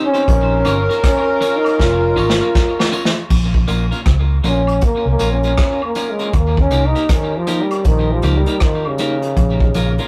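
Roots reggae at a laid-back 79 BPM in Bb dorian, this meditative excerpt from a longer piece sways on a swung sixteenth feel over a Bbm chord that moves to Eb and back. A breathy, close-miked trombone carries the melody with a soft attack and light vibrato, its whispered, intimate tone treated with dub echo, and it takes a solo from 3.3 seconds onward. A distant, roomy horn section adds a mellow second line only until 2.9 seconds, while a vintage brush drum kit with dark cymbals, a punchy kick and rim clicks plays a fill from 1.8 to 3.3 seconds. Underneath, a foam-muted fingered electric bass sits round and up front, and a compressed, slightly broken-up electric guitar picks its accompaniment through dub echo. Tambourine and woodblock tick along in the background with their own echo, and the whole rough rehearsal-room recording has a warm saturation and a moderate studio reverb.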